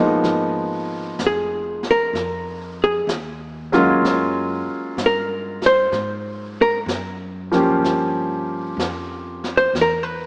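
Melancholic and smoky, this jazz ballad excerpt drifts at 63 BPM in 4/4 with a swung eighth-note feel, moving through a rootless Db13, Gbmaj9 and Gm7b5. A polished baby grand piano comps up front over a woody, thumpy pizzicato upright bass and a brushed drum kit playing snare and hi-hat. At 1.3 s a clean, compressed hollow-body electric guitar enters with a dark, picked melody, all set in an echo-chamber reverb with a small-speaker character.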